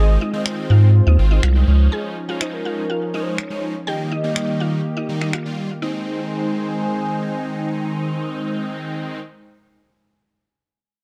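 A straight 4/4 pulse at 123 BPM drives this carefree, upbeat dance-pop fragment in Ab major, cut from a longer piece. Dry electronic finger snaps come in at 0.5 seconds and carry the beat until 5.4 seconds, while a deep, round analog bass sits up front with a fast attack but drops out by 1.9 seconds. Two melody parts share the top: a woody, percussive mallet-like synth pluck with a short decay, and a velvety, smooth sawtooth lead with portamento and a dark edge, both treated with chorus and tape echo. Underneath, a fat, bold polysynth brings bright, evolving detuned sawtooth chords shaded by chorus and phaser, and a mellow analog pad with a slow attack holds sustained harmony. The chords move from Ab through Dbadd9 to Eb and return to Ab, all in a light-reverb, echo-heavy mix.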